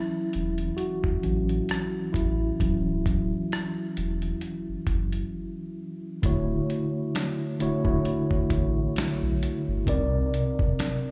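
A slow 66 BPM pulse in 4/4 sways with a light sixteenth-note swing, as a sampler-style drum kit enters at 0.3 seconds with a thumpy kick, a medium-tuned snare, rim clicks and hi-hat, all compressed and gritty, as if re-recorded in a small room and placed up front. This relaxed, soulful neo-soul and R&B passage in D major is cut from a longer piece and opens on a mellow tine electric piano, clean and heard through its built-in speakers with a slapback echo, soloing over a rootless Dmaj9 for the first 6.2 seconds. A deep, round sine sub bass with a fast attack and sustained notes settles underneath from 0.4 seconds. After a break at 5.3 seconds, the second section arrives at 6.2 seconds on Dmaj7 and shifts to Cm7 near the end. The whole performance sounds like a live club gig heard through the venue's PA, softened by light reverb and a digital ambience.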